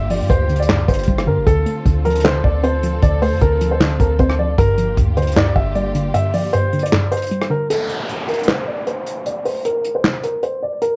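Trap-leaning hip hop at 154 BPM in a half-time feel, brooding and dark, cut from a longer piece and carrying the light reverb and softened sheen of a home cassette recording as it moves over Gm7, Dm7 and back to Gm7. A mellow, intimate baby grand piano with audible action noise carries the melody up front, over a soft, round, chorused pluck, lush, woody bowed strings with vibrato sitting low in the mix, and a deep, boomy 808-style bass that drops out at 6.1 seconds. An acoustic drum kit played with bundle sticks, with a punchy kick, medium-tuned snare, hi-hat, rim click and handclaps, has a rolled-off top, and from 7.7 seconds the harmony stops for a break where an electronic downlifter sweeps under the piano and drums.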